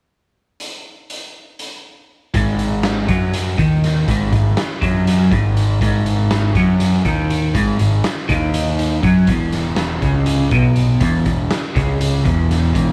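A light reverb gives this trippy, hypnotic psychedelic rock excerpt a gentle sense of space. It runs at 242 BPM counted in eighths, in a straight 7/8, in G# minor with tuning set to A4 = 438 Hz. A raw garage drum kit opens alone at 0.6 seconds, its hi-hat, punchy kick and medium-tuned snare sitting in a bright stone room with a dark, rolled-off top. At 2.3 seconds a clean electric guitar riff and a fuzz picked electric bass arrive together over a G#5 chord. The guitar is twangy, scooped and compressed, double-tracked and washed in phaser, while the overdriven bass sounds round and up front beneath it. The harmony moves to E5 at 9.3 seconds, and the hypnotic groove carries on to the close.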